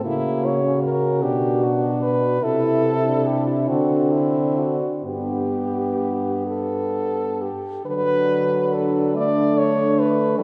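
A slow, rubato 6/8 sways at 42-51 BPM in dotted quarters, giving this serene classical excerpt for horn quartet in G major an unhurried, lyrical flow. A warm, close-miked French horn carries the melody up front with vibrato and a soft attack, while a dark, smooth-topped horn sings a second line in the background, a mellow horn fills in the accompaniment, and a horn with light vibrato holds the bass up front. The quartet blooms in a wet church reverb with a 3.3-second tail, and the harmony moves from Bm through C and D9 to G before settling on D at 7.9 s.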